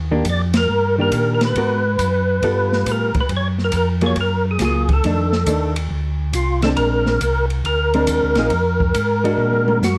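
Soul jazz organ trio swinging at 138 BPM in a soulful, bluesy mood, with a round, mellow tonewheel organ carrying the bass line through a slow rotary speaker, a dark, clean hollow-body guitar comping underneath, an acoustic drum kit with a boomy kick and rolled-off top, and a fat, lightly overdriven percussive organ playing the melody up front with key click and chorus vibrato, all set in a large studio reverb, with a band accent at 0.5 seconds and a drum fill closing at 9.8 seconds over rich extended chords.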